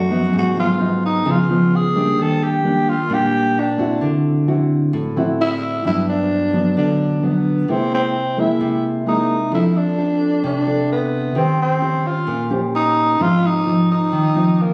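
Sunny and romantic, this short bossa nova passage moves at 131 BPM in a straight 4/4 and is cut from a longer piece. A growling tenor saxophone carries the melody up front, with a breathy, raspy subtone, a soft attack, scooped notes and a gentle vibrato in a jazz style, and it takes a solo over the opening 5.8 seconds. A dark, full-bodied nylon-string guitar accompanies throughout, thumb-plucked with a deep classical sound and an occasional finger squeak. The harmony drifts through rich jazz chords such as Abm7, Ebmaj7, Gmaj7, C7alt and Eb13 before settling on Ab6. The recording has the intimate feel of a phone capturing a small room, with a modest reverb and compression adding polish.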